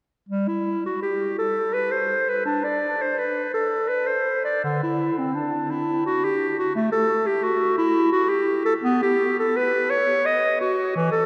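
A flexible, rubato triple metre gives this serene, dance-like baroque-style fantasia its gentle sway. A solo clarinet carries the whole passage from 0.3 to 11.3 seconds, its clear, classical tone placed up front and ranging from low D3 to Eb5. The dark, warm production sets it in a long, wet cathedral reverb, and the passage is cut from a longer piece.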